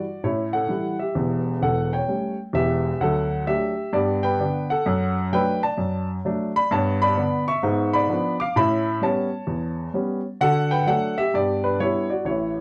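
A warm, woody upright piano sits up front in a moderate club reverb in this short cut from a longer piece. It's exuberant, playful stride piano at 130 BPM in D major, swung and played solo across a broad range from the deep bass to the upper register. The harmony moves through A7, D and G, passes a G#dim7, and lands on an A9 before settling back to D around 10.4 seconds.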